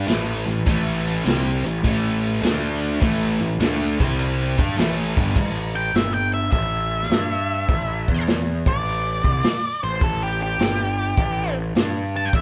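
Recorded live in one room with a moderate studio ambience, this smoky, gritty fragment of swung blues rock and southern rock opens on a bright, double-tracked thick fuzz guitar riff over a growly, overdriven fuzz picked electric bass and a punchy vintage drum kit with a rolled-off top, until the riff stops at 5.3 seconds and a dark octave-fuzz lead guitar takes a solo from 5.8 seconds to the cut at 12.4 seconds.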